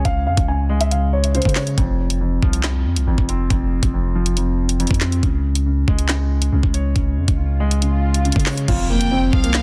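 A half-time drill groove drives this tense, dark hip hop clip, with an overdriven, up-front kit of knocking kick, woody snare, bright hi-hats, rim clicks, handclaps and crash, over a deep, long-decaying sine 808 bass. A dark, boxy concert grand carries a delayed melody that opens the clip and returns at 8.7 seconds, while a second mellow piano holds the accompaniment throughout. An electronic swell rises in the background from 7.4 seconds into an impact, and a lush, vibrato-rich violin section adds a brief delayed line at 8.9 seconds, all in a dry, dense, heavily limited mix.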